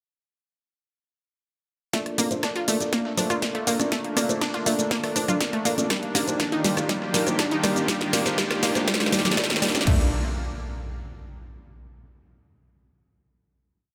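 Bathed in a lush hall reverb, this euphoric, expansive progressive house piece at 121 BPM in Bb major builds from 1.9 s as a punchy four-on-the-floor electronic kick, a layered big-room dance kit with shaker, hats, snare and crash, a gritty, very quiet sampler-style breakbeat kit and a background rim click and conga loop, joining at 2.1 s, drive a bright, detuned unison pluck arpeggio with tape colour and delay, thick-felt muted upright piano stabs with audible action noise, and a barely audible round analog bass, while a slow-attack supersaw pad enters at 2.6 s under a filter sweep and sidechain pumping, and background riser and impact effects carry the build into a final Bbmaj7 chord at 9.9 s.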